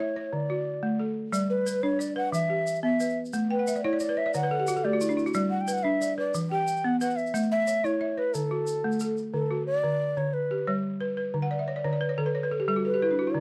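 A mellow, end-blown bamboo shakuhachi and a buzzing balafon open this joyful fragment of West African string and xylophone music together, both placed up front in a dry, close, small-room sound with a 1970s studio character. The shakuhachi carries the melody with an airy, straight, tongued tone, while the balafon, struck with hard rubber mallets, plays woody arpeggios spanning low to high registers and adds short fills along the way, one of them at 11.4 seconds. A grainy tube shaker, softer and with a live-room character, joins at 1.3 seconds and drops out at 9.2 seconds. The music moves in a straight 12/8 at 120 dotted-quarter beats per minute, in G lydian with tuning slightly below standard pitch. The harmony circles through D, G, E minor and A before a closing passage turns to a lush Dmaj13 and settles on G, giving the whole a bright, sunny glow.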